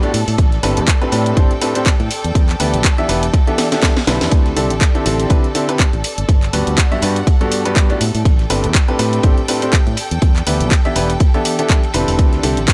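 A dry, gritty hardware recording catches a feel-good, uplifting piano house groove, where a brilliant grand piano riff with tape echo and sidechain pumping rides up front over Am11, Em7, D9sus4 and Gmaj7 chords, a round, dark fingered electric bass and lush, bowed symphonic strings pump along beneath it, a punchy electronic kick joins at 0.4 s, and a house kit of cracking snare, handclaps and hi-hats is layered with a very quiet, cloth-damped acoustic kit of fat snare and dark ride, with a drum fill at 3.6 s.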